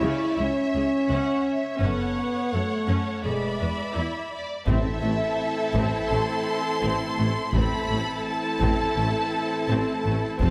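This cinematic, epic orchestral film score, cut from a longer piece, moves at 84 BPM with a dark, epic mood, as lush bowed violins carry the melody over a focused second violin line, intense violas, clear cellos and distant, shadowy French horn chords, while vibrato double basses join at 1.8 s through C#m, F#m and E7. At 4.7 s the music settles into A minor and fills out: heavy taiko drums strike forward in the mix, timpani sound briefly on A2, and a background string section, mellow tuba and tight trombones fill out the sustained harmony. A moderate scoring-stage reverb gives the orchestra a spacious, grand sound.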